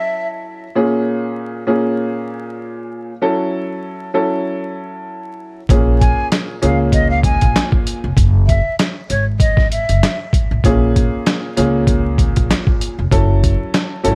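Moody and dark, this boom-bap hip-hop excerpt opens on a mellow, woody upright piano cycling between Gbm7 and Bbm7 beneath a brief flute phrase, then at 5.7 seconds a gritty, pitched-down sampler-style drum kit with a thumpy kick, handclaps and hi-hat arrives alongside a pizzicato upright bass, while a breathy, unsteady jazz flute with vibrato and digital delay carries the melody from 6.0 to 10.2 seconds over small-room ambience and vinyl crackle.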